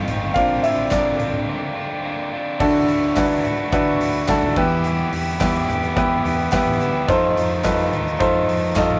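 Uplifting, hopeful piano-driven pop fragment in which a clear, up-front concert grand drives the accompaniment over a bright, compressed overdriven guitar riff, a gritty picked bass and a huge, punchy arena drum kit with glittering cymbals, while smooth, intimate strings hold soft sustained chords until 2.6 seconds and a hollow, distant group handclap sits faintly beneath, all captured with a rough, saturated rehearsal-room character.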